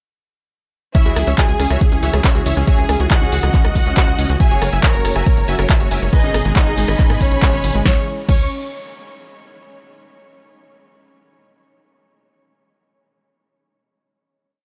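A punchy four-on-the-floor electronic kick sits up front, with a tape-warm analog drum machine programming hats, a backbeat snare, claps, rim, shaker, ride and crash. Together they drive a short, emotional and bittersweet uplifting trance piece that opens straight into its drop at 0.9 s, with a tight, rolling sixteenth-note sequencer bass entering at 1.1 s. Huge, detuned supersaw chords carry a bright repeating riff in thirds and sixths over a pedal note, roughened by vintage 12-bit grit, pumping and delay. A symphonic violin section doubles its own riff in octaves, while a silky, very quiet analog string pad holds sustained chords and a ring-modulated unison pluck loops a three-step pattern in the background, before everything resolves on a final chord at 7.9 s.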